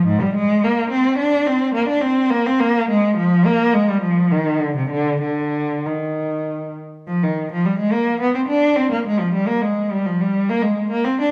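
A solo bowed cello carries this brief passage, played by one expressive player with a warm, vibrato-rich tone and gliding portamento between notes. It is a baroque-style suite movement for unaccompanied cello, dance-like and flowing in triple metre, with a supple rubato feel. The cello sits up front yet has a slightly distant quality, moving through its lower and middle register across the full 11.3 seconds. The opening phrase returns at 7.1 seconds, giving the fragment a sense of restatement before it is cut from the longer piece. A reverberant recital hall surrounds the instrument, and the overall production leans dark.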